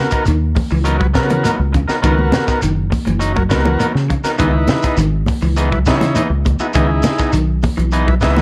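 A straight, driving afrobeat groove in 4/4 rides on a tight funk drum kit, whose hi-hat, high-tuned snare and tight kick sit mid-forward in a small room. Tucked in the background are a grainy, band-limited shekere and bright, high-tuned congas played with soft hands. Up front, a fingered electric bass sounds dark, round and punchy. Two slightly broken-up electric guitars share the middle: one picks low, dark arpeggios, while the other adds warm, twangy fingered stabs. A buzzy, overdriven combo organ with heavy vibrato and plate reverb carries the accompaniment, then plays a fill from 7.9 s. The harmony moves from Bmaj9 to C#m9 at 4.4 s, and this intense cut from a longer piece has light reverb and the character of cassette tape.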